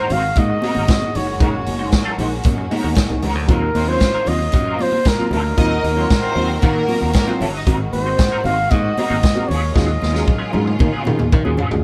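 A straight 4/4 disco groove at 115 BPM in Eb dorian, cut from a longer piece, sets a glamorous, sultry mood, with a punchy vintage drum kit up front, a growly, bright fingered electric bass, and damped, high-tuned congas behind them, while a clean, picked electric guitar with wah and tremolo, a reedy electric piano with fast tremolo and a clear, lush symphonic string section support a mellow flugelhorn melody with light vibrato, a smooth, bowed violin section adds a second line from 3.8 to 7.7 s, and a drum fill from 9.8 s rounds off chords such as Ab9 and Ebm11 in a moderate studio reverb.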